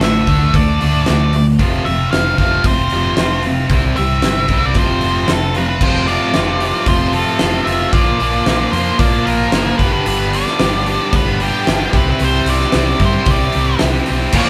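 Driving and confident, this classic rock excerpt moves at 113 BPM in a straight 4/4, with a band playing live together in one room under a moderate studio reverb. A big acoustic drum kit sits up front, its dark, smooth sound carrying a fat snare, punchy kick, hi-hat and crash cymbal, while a round, hollow-body short-scale bass, fingered and amped, anchors the low end. Two bright, picked overdriven electric guitars drive the riffs, one touched with spring reverb, as a dark octave-fuzz lead guitar carries the melody above them. The harmony travels through D, F, C and F before the second section shifts to Bb, G and Cadd9. At 14.3 seconds, just before the cut, a double-tracked raw garage guitar and a piping, scooped tonewheel organ with key click, chorus vibrato and slow rotary speaker slip in from the background.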